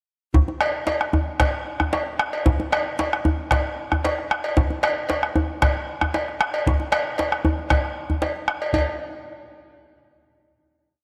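A straight 4/4 pulse at 115 BPM drives this short, festive West African traditional drum ensemble piece from start to finish. The bombo enters at 0.3 seconds with a round, close and dry tone, laying down an evenly spread pattern at the front of the mix. The medium-tuned djembe joins at the same moment, played with soft hands and also close, dry and up front in its own even pattern. A metallic cowbell comes in at 0.6 seconds with a bell pattern, its sound more distant and roomy than the drums. The single driving section gives way at 8.7 seconds to a final hit that rings out through a moderate plate reverb, and the recording carries some lossy compression artefacts.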